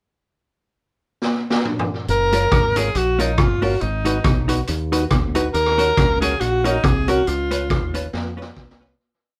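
The rhythm is a bouncy 4/4 ska beat at 139 BPM with a light swing on the eighths, set down by a street-band drum kit that enters at 1.2 s with a fill through the pickup bar, then settles into a side-stick backbeat with boomy kick, medium-tuned snare, hi-hat and toms, its top end rolled off and its sound mid-forward and up front. From 2.1 s the head begins in F# major, moving through F#maj7, G#m7, D#m7 and C#7, as a fingered electric bass comes in with a round, punchy walking line shaped by an envelope filter, sliding and using chromatic approach notes. A clean, dark hollow-body jazz guitar picks compressed off-beat chops, while a breathy tenor saxophone carries the cheerful lead up front, building a motif-based song melody with scooped notes, vibrato, a soft attack and a whispered, intimate tone. The band plays live in one room with moderate studio ambience, and the short piece fades out from 7.3 s as a second drum fill closes it.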